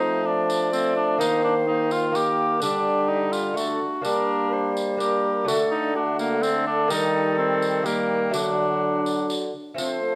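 A triple metre at 126 BPM, with a straight feel, drives this courtly, rustic Renaissance-style consort dance, cut from a longer piece and tuned to A4 = 444 Hz, its chords moving from F through Eb and a suspended D to G minor and back toward D. An airy silver concert flute with vibrato and a soft attack carries the melody over a mellow, up-front cor anglais on the second line, while a clear but distant trombone and a delicate, fingerpicked gut-strung lute with doubled courses provide accompaniment, the lute sitting in the background. A mellow bassoon with light vibrato holds the bass, a jingly, vintage-sounding tambourine joins at 0.5 seconds, and a moderate recital hall reverb surrounds the ensemble.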